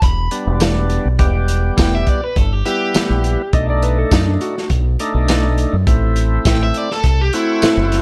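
An overdriven semi-hollow guitar sings the melody from the very start, set over a deep, round fingered bass and a crunchy breakbeat kit of kick, snare, hi-hat and tambourine, opening a mournful, brooding straight-eighth soul blues. The drums sit up front with a gritty, saturated character, a tight kick and a rolled-off top, while the bass also sits forward in the mix. A thick tonewheel organ joins at 0.3 s, lightly overdriven with audible key click and a slow rotary speaker, and a bright, compressed clean guitar recorded direct adds very quiet stabs soon after. Between 3.5 and 4.7 s a dark lap steel slides in briefly as a second line, just as the harmony moves from E minor to a tense B7#9 before settling on A minor. Studio reverb surrounds the band throughout this short excerpt, which is cut from a longer piece.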